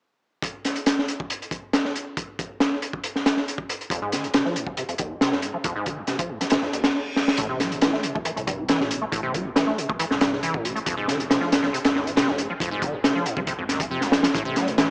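Breakbeat with a gritty, funky mood, cut from a longer piece, built on a crunchy, saturated breakbeat kit up front with a punchy kick and high-tuned snare, joined at 3.9 seconds by a rubbery, resonant acid bass riff treated with analog chorus and tape echo over Fm7 and Am7 chords. A background reverse cymbal rises into a drum fill at 7.2 seconds, after which a rumbling, detuned sawtooth bass settles low beneath the mix. The sound is dry and lo-fi, with a cassette-tape, small-speaker character and a moderate plate reverb.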